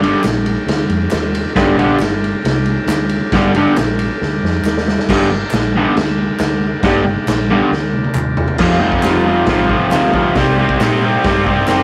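A straight 4/4 pulse at 136 BPM drives this raw, menacing garage rock excerpt in G minor, with an up-front acoustic kit of punchy kick, medium-tuned snare and a rolled-off top in a bright stone room, its fills arriving at 4.2 seconds and again before the last section. A double-tracked, overdriven picked guitar riff leads, underpinned by the round, dark tone of an amped hollow-body short-scale bass, while a buzzy vintage combo organ holds clean sustained chords through spring reverb in the background, joined from 0.2 seconds by crisp group handclaps. The harmony sits on Gm before moving to F and then Cm, and a transistor organ fill at 10.8 seconds caps this rough rehearsal-room take with its tube saturation.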